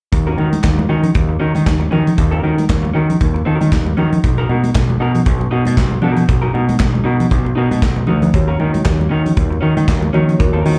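A swung sixteenth-note disco groove in 4/4 drives this short, glamorous and sultry cut from a longer piece, built on a punchy kick, medium-tuned snare, hi-hat and handclaps from a pumping acoustic kit, with damped, thin-skinned congas tucked in the background. Up front, a growly, overdriven picked bass rides over Ebm7 and Bmaj7 chords while a slightly broken-up, lo-fi electric guitar through a small old amp adds slapback-echoed accompaniment. At 8.3 seconds a mellow tine electric piano joins, and the whole performance carries the club reverb of a live gig heard through the venue's PA.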